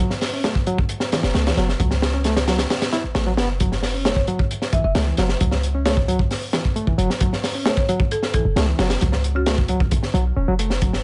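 A crunchy, up-front breakbeat kit drives this funky, swaggering breakbeat clip at 133 BPM in F# minor, its punchy kick, high-tuned snare and hi-hat sounding saturated and gritty with a dark, rolled-off top. From the first moment, a barky, reedy electric piano plays a riff over a single F# minor chord, lightly overdriven with a fast tremolo, delay and the lo-fi crunch of a vintage 12-bit sampler, as if heard through its built-in speakers. At 1.2 seconds a deep, boomy 808-style bass joins underneath, a mellow sine tone with a noise layer, a fast attack and a decaying tail. A woody folk marimba, struck with medium hard mallets on hardwood bars, carries a rustic, mid-forward melody in the background from 4.1 to 10.0 seconds, given a small-speaker tone and a touch of delay. Studio reverb places the whole groove in a room, and the short piece is cut from a longer track.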